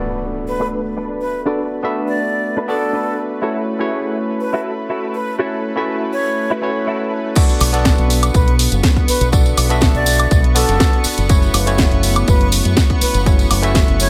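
A straight 4/4 groove at 122 BPM drives this sleek, groovy nu-disco excerpt in B minor, which opens with an electronic impact as a barky, lightly overdriven tine electric piano with dub echo, a thick, warbling unison pad under a filter sweep, and a scooped, clean electric guitar riff with ensemble chorus back a breathy, reedy concert flute melody with vibrato and delay over Bm7 and F#m7; the guitar drops out by 7.1 seconds, and at the drop at 7.4 seconds a punchy, overdriven electronic kick and a house kit with a cracking snare, hi-hat, crash and woodblock arrive with a dry tambourine in the background, joined by a round, up-front fingered electric bass with an envelope filter.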